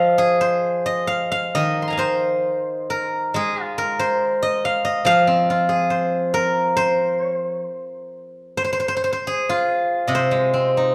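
A moderate recital-hall reverb, with a decay of about 1.4 seconds, surrounds this short passage of Chinese traditional music cut from a longer piece. A solo acoustic steel-string zither, played with fingerpicks, sits up front and carries everything from 0.0 to 10.9 seconds, ranging from C3 up to C6. Its tone is silvery and ringing, giving the longing, elegant mood a refined shimmer. The playing moves freely in rubato around 65-72 BPM in 2/4, drawing on the C jue mode. At 8.5 seconds the music turns to a new section, which carries on until the cut at 10.9 seconds.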